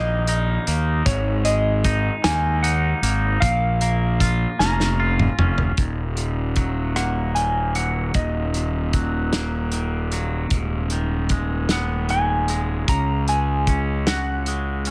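A clean lap steel melody opens this melancholic, brooding post-rock excerpt in Eb minor, set against twangy, slightly warbling electric guitar arpeggios with slapback echo and a growly, fuzz-overdriven fingered bass up front, while a loose, acoustic indie drum kit with a tight kick and mid-tuned snare joins at 0.3 seconds and plays a fill from 4.6 to 5.8 seconds into the second section, all moving at a slow 51 BPM in 6/8 within a small, lightly reverberant room.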